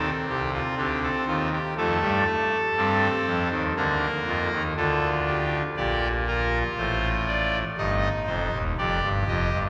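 A pipe organ opens alone on its trumpet stop, sounding brassy and bright with a baroque voicing placed up front, in this short cut from a longer classical piece. It is a baroque-style fugue in three parts, lively and joyful in mood, moving in a straight 4/4 feel. The organ spans a broad range, from Eb1 up to Eb5, while the harmony moves from C minor through F7 to Bb over D. At 5.8 seconds a new section settles onto Bb before turning back to C minor, and the solo organ plays on until 9.7 seconds. A long, wet cathedral reverb with a 4.5-second decay surrounds the instrument, giving the church or concert-hall setting a grand, resonant space.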